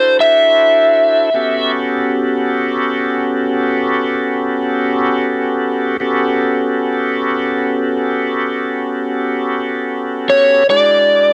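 Soulful and gritty, this short blues passage in 12/8 is cut from a longer piece and opens with an overdriven electric slide guitar singing an up-front, fingered melody that drops out at 1.7 seconds and returns at 10.3 seconds. Underneath, a bright, reedy tonewheel organ holds sustained chords throughout, its key click audible and its slow rotary speaker turning as the harmony moves from D9 to a long stretch of A13 before landing on E9. A moderate spring reverb and the character of a home cassette recording give the whole passage a lived-in, intimate feel.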